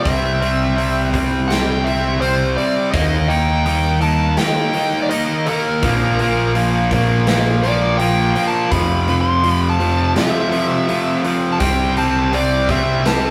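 A rough rehearsal-room recording with moderate reverb carries this anthemic, cathartic slice of quiet-loud alternative rock in a half-time 4/4 feel, where a dark, smooth overdriven lead guitar solos over an up-front, bright distorted riff guitar, an amped, round, punchy picked bass and a big, natural acoustic drum kit of kick, medium-tuned snare and hi-hat, while a clean, twangy twelve-string electric guitar with phaser plays arpeggios in the background until 5.8 s, when a fuzz guitar takes up its own riff behind the other parts.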